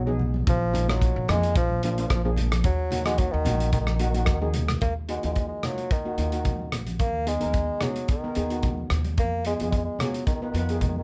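Calypso in Eb minor at 110 BPM with a gentle swing, brooding and bittersweet, cut from a longer piece. A classical-style bassoon with light vibrato carries the melody up front, over woody pizzicato upright bass, a shimmering, airy steel pan played with soft rubber sticks, and distant, thin-skinned congas played with soft hands in the background. A loose indie drum kit with a tight kick, rim click and a rolled-off top joins at 0.5 seconds and plays a fill from 4.1 to 4.8 seconds into the second section, where the chords move from Abm7/Eb to Fdim under light reverb.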